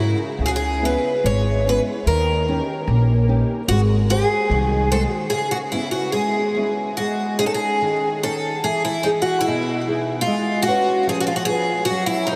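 A bright, shimmering, octave-doubled picked twelve-string acoustic guitar carries the melody up front with subtle chorus and delay in this longing, passionate fado-style ballad in C# minor at a rubato 73 BPM in 2/4, over a dark, fingerpicked nylon-string guitar with analog chorus and a woody pizzicato upright bass that plays only until 5.0 s, with a break from 5.3 to 7.0 s, all drenched in a huge ambient reverb for a dreamy sound in this fragment of a longer piece.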